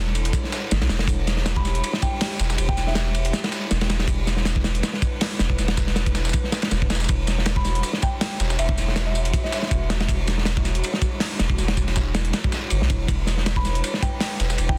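A 160 BPM jungle drum and bass groove with a light 16th-note swing drives this dark, nostalgic E minor excerpt, where a crunchy, up-front breakbeat kit of tight kick, dark ride and snare meets a gritty, overdriven sampler-style layer of hi-hat, snare and tambourine over a deep, thick saturated sub bass, while an airy, breathy detuned pad holds Em7 then Em9 chords in the background and a soft, pure FM bell with chorus and dub echo surfaces at 1.6, 7.6 and 13.6 seconds, all in a small room with a dense, heavily limited modern master.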